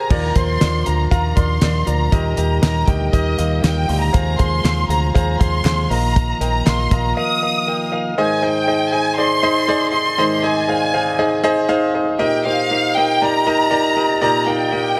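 A rich, lush violin section carries the melody over a clear, intimate grand piano from the opening moment, both touched by slapback echo, in this hopeful, uplifting piano-driven pop excerpt at 119 BPM in straight 4/4. A piping, lightly overdriven tonewheel organ with chorus vibrato holds sustained chords in the background, while a round, deep dub fingered bass and a damped 70s kit with a fat snare and tight kick play until about 7.0 s, joined briefly by very quiet, crisp group handclaps. From 8.2 s the piano and violins carry on alone, wrapped in a lush hall reverb that gives a big arena sound.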